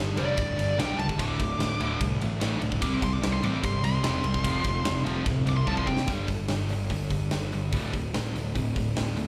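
Menacing, aggressive hard rock at 147 BPM opens on a biting overdriven guitar riff set in the background, two very quiet bright distorted guitars (one double-tracked and compressed) and an up-front fuzz bass with a punchy, overdriven edge, before a big acoustic rock kit with a medium-tuned snare and a bright stone-room sound joins at 0.2 s alongside a dark, high-gain lead guitar solo with slapback echo that runs until 6.1 s, where a drum fill closes the first section and the double-tracked guitar drops out, all heard as a live club gig through the venue's PA with light reverb over chords moving from G through D5, C5, F5, G5 and D5.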